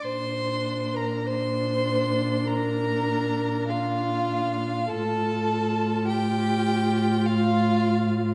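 This classical excerpt comes from a slow, romantic movement for string quartet in Bb major, moving at 50 BPM in 4/4 with a lyrical, rubato feel and a warm mood. A clear, smooth first violin carries the melody high above, its vibrato even, while a second violin sings a close, up-front counter-line with soft attacks and expressive portamento. The viola fills in the accompaniment with a warm vibrato and a silky top, and the cello anchors the bass, intimate and present, its sliding notes rounded and soft. All four players sound together from the opening through 8.3 seconds, the harmony settling from Bb to F/A at 4.9 seconds. A reverberant recital hall surrounds the ensemble, and the production leans dark and mellow.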